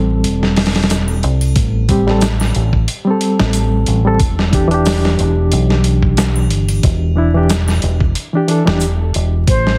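A reedy, lightly overdriven electric piano with tremolo, tape echo and a filter sweep opens over a round, dark fingered dub bass on Am7 moving to Em7, joined by a gritty sampler-style drum kit with a thumpy kick, while egg shaker and triangle sit close and dry in the background of this melancholic, hypnotic trip hop fragment at 91 BPM with a gentle 16th swing, heavily compressed radio sound and vinyl crackle, before a pure silver concert flute with vibrato and 12-bit sampler grit enters on C5 at 9.5 seconds.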